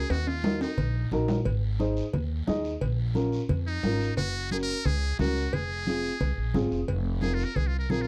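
A muted trumpet and a plucked upright bass open this short cut from a passionate, driving cumbia, with congas, cowbell and timbales joining almost at once under a drum fill. The bass sits up front, woody and warm on steel strings, while a dark upright piano enters at 0.4 seconds to add mellow, boxy chords beneath the groove. The congas sound bright and damped, struck with hard hands but kept in the background, and the cowbell and timbales ring out close and metallic. A raspy guiro scrapes faintly in the distance, as if from a large room. The trumpet, buzzy and thin with scooped notes, returns at 3.7 seconds and carries on into a brief muted solo from 6.9 seconds, all captured in a dry, close 1970s-style studio sound.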